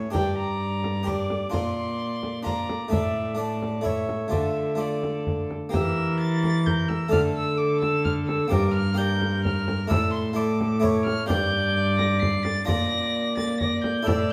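In a straight triple metre, this solemn, rustic renaissance-style consort dance sets a nasal, distant gut-string violin melody over a reedy viola second line with light vibrato, a round, close-miked Italian-style harpsichord, a dark, up-front cello bass with a smooth top and a softly played hand frame drum, the whole consort heard from further back in a stone room's reverberation.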